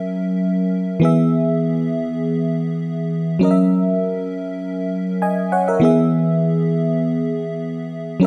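Light reverb surrounds a close, up-front keyboard sound in this short, sunny afrobeats cut from a longer piece. A lush FM electric piano layered with a soft pad plays alone for the full 8.3 seconds, its chorus-treated tone dark and dreamy, with a fast attack, a decaying body and a noise layer. Moving at 100 BPM in a straight 4/4, the part spans E3 to G#5 and moves between F#7 and E chords, landing on F#7 again at 3.4 seconds before returning to E at 5.8. The tuning sits slightly below standard at A4 = 439 Hz, and the overall mood is bright and joyful.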